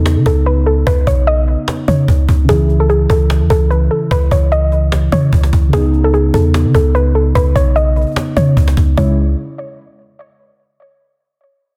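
A deep, boomy 808-style bass sits up front in this brooding trap excerpt at 148 BPM in a half-time feel, its clean sine tone carrying the low end under chords that move between B/C# and C#m in C# minor. A soft, round pluck carries the melody through chorus and digital delay, while muted, detuned felt-like synth keys with chorus supply a dark, intimate accompaniment. A snappy, close-miked cajon played with hard hands drives the drums from 0.1 seconds, all wrapped in light digital ambience and a dense, heavily limited modern master.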